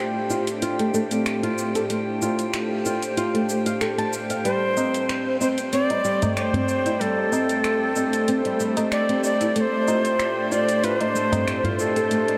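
Hypnotic and earthy, this organic downtempo excerpt moves at 94 BPM in 4/4 with a light sixteenth-note swing, opening on a bright, detuned bowed-like drone holding sustained chords beneath fingerpicked flamenco guitar arpeggios with audible finger squeak, a filtered tone and diffuse delay, while a glassy sine texture drifts quietly in the background. An electronic afro-pop kit of cabasa, finger snaps and metallic hi-hat enters at 0.3 seconds, and at 4.4 seconds a breathy cedar flute with crisp chiff and vibrato takes the melody up front, joined at 4.8 seconds by a high-tuned, close and dry tabla with short ring. The harmony shifts from F/A to Am7 and back, all set in a dreamy mix soaked in a huge ambient reverb.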